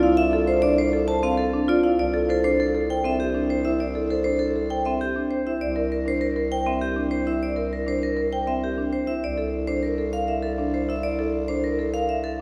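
Set in a brisk 6/4 at 199 BPM with a straight feel, this minimalist pattern piece in C mixolydian moves with a propulsive, hypnotic pulse, and it is cut from a longer work. A vibraphone struck with medium hard mallets carries the melody between G4 and A5, its metallic, ringing tone bright and up front, shimmering with a fast motor vibrato. Beneath it, a marimba played with medium hard mallets spins arpeggios from C4 to C5 in a dark, smooth voice. A mellow bass clarinet, played in a classical style and placed up front, anchors the bass on a low C2 throughout. The harmony shifts over a steady C foundation, moving from Dm7/C through Am7/C and C7(no3) to Bbmaj9/C at 9.2 seconds. A generous church reverb surrounds the ensemble, lending the sound the lingering resonance of a church or concert hall.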